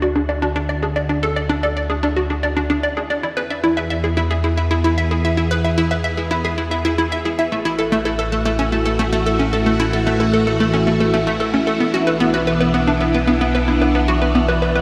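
Bathed in a wet echo-chamber reverb, this expansive, luminous slice of ambient, sequencer-driven space music moves through Dmaj7, E, A6 and Bm. A hollow, bouncy square-wave pluck carries the riff up front with subtle chorus and tape echo, while a swirling vintage string machine with ensemble chorus and phaser fades in on sustained chords. A fat analog bass sits up front beneath them, and an airy, wind-like tuned noise texture with its own reverb fades in from the background.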